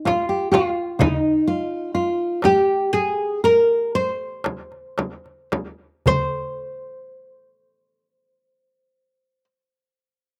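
A fingerpicked nylon-string guitar and a plectrum-plucked oud open this melancholic, longing passage of Arabic maqam ensemble music, cut from a longer piece and set in C maqam bayati with A4 tuned to 438 Hz. The guitar carries the melody up front with a full-bodied, fresh-stringed classical tone and audible finger squeak, while the woody, fretless oud, with its doubled strings, traces a second line in the same register, both touched by a slapback echo. From 0.1 s a crisp metal-shell darbuka, miked close, and a large, deep frame drum, close and dry, play in a straight 10/8 at roughly 107 to 131 eighth-note beats per minute. The tempo slows through the opening section, and a new section begins at 6.1 s, with the percussion dropping out at 6.6 s so that guitar and oud carry on as a duo. The recording was made outdoors, free of room sound, with a touch of light reverb.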